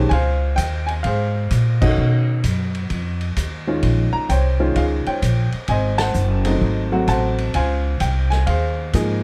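A swung 4/4 pulse at 129 BPM, with eighth notes lilting at a 66% swing, drives this short jazz piano trio excerpt cut from a longer piece, and its mood is moody and smoky. A warm upright piano carries the melody across a range of Eb3 to Bb5, intimate and up front, its short sustain and audible action noise giving it a natural, close feel. Beneath it, a pizzicato upright bass with steel strings spans Gb1 to B2, woody and sitting forward in the mix. A vintage drum kit plays crash, ride, hi-hat, snare and kick, its dark cymbals, punchy kick and medium-tuned snare colored by a gritty, saturated character with a rolled-off top. The harmony moves from Dbmaj9 through B9, Bbm11 and Ab7b9 before returning to Dbmaj9, with the whole band hitting accents at 1.7 and 5.9 seconds. Captured with close, detailed microphones and little reverb, the trio sounds dry and immediate.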